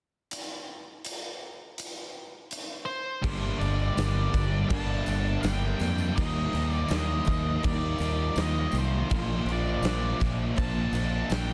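Shoegaze-leaning rock with a dream pop haze, this wistful, dreamy passage is cut from a longer piece and opens with a huge arena drum kit alone, its punchy kick, medium-tuned snare, hi-hat and bright crash cymbals sitting up front in a pumping hall sound. At 2.9 seconds a dark octave-fuzz lead guitar enters with the melody, smeared by distortion and digital delay. From 3.2 seconds the full band arrives over a Gmadd9 chord, moving on to Ebadd9 and then Bbadd9. A growling fingered electric bass, overdriven and bright, pushes up front, while a crunchy overdriven guitar treated with reverse reverb sits in the background alongside a very quiet double-tracked distorted electric guitar and a very quiet thick fuzz guitar, all three playing the riff. A shimmering, octave-doubled twelve-string acoustic guitar picks very quiet arpeggios with audible finger squeak, and a jingly tambourine rings in the background of a dense, heavily limited modern master with little reverb.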